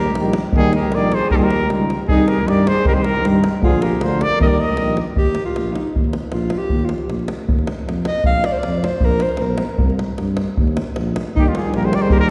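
Virtuosic and exuberant, this short excerpt of Balkan brass band folk moves at a brisk 156 BPM in 2/4 in Eb major, with a deep, dry davul up front and a mellow, distant tuba anchoring the bass. A mellow trumpet with light vibrato carries the melody over a dark French horn and euphonium sitting in the background, then the trumpet, horn and euphonium drop out while the close-miked alto saxophone, warm with vibrato, takes a solo from 5.2 to 11.3 seconds before the others return. The band sounds as if heard from further back in a reverberant concert hall.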